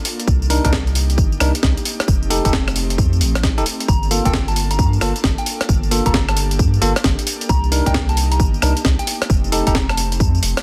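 A dense, heavily limited modern master with a layer of vinyl crackle and digital ambience frames this moody, bouncy fragment of two-step UK garage, cut from a longer piece and carried by a 64% swing on the sixteenths. A punchy, layered electronic kick and a round, soft dub sub bass anchor the low end, while a gritty, pitched-up breakbeat sampler kit adds hi-hat, rim click, tambourine and a compressed, medium-tuned snare placed up front. A bell-like tine electric piano plays bright, clean stabs, roughened with vintage 12-bit sampler grit and a delay. Beneath them, an airy, breathy pad with a detuned sawtooth and noise layer holds sustained chords from the opening, treated with chorus and sidechain pumping that makes it breathe with the groove. From 3.9 s, a soft, pure FM synth bell enters with a mellow, decaying melody high above, colored by chorus and digital delay, as the harmony moves through Cm7, F9 and Gm9.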